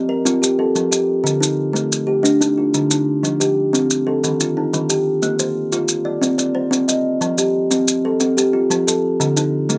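A straight 12/8 pulse at 121 BPM drives this hypnotic, mbira-style interlocking cycle in the southern African traditional vein, set in F mixolydian and cut from a longer piece. A woody, hollow-boxed kalimba opens at 0.0 s with ringing, thumb-plucked arpeggios, airy and up front. Grainy, mellow maracas join at 0.3 s in a small, moderately ambient room, and from 3.2 s the harmony moves through F, Eb, Bb and Cm for a warm, circling feel.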